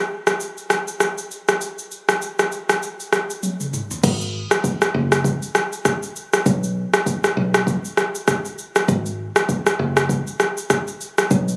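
An electronic, produced afro-pop drum kit sits up front from 0.3 seconds, its deep kick joined by rim click, shaker, toms and crash cymbal, all carrying a tape-warm character from being re-recorded in a small room. This afrobeats groove moves at 99 BPM in 4/4 with a 16th-note swing that gives it an easy, sunny lilt and a romantic glow. The drums play alone through the opening section, closing it with a fill at 3.4 seconds. At 4.0 seconds a fingered electric bass enters for the second section, direct and punchy with a foam-muted roundness, sitting low between F#1 and B1 and placed up front alongside the kit. The whole cut, taken from a longer piece, sounds as if captured on a phone in a club-like space, with a light reverb around it.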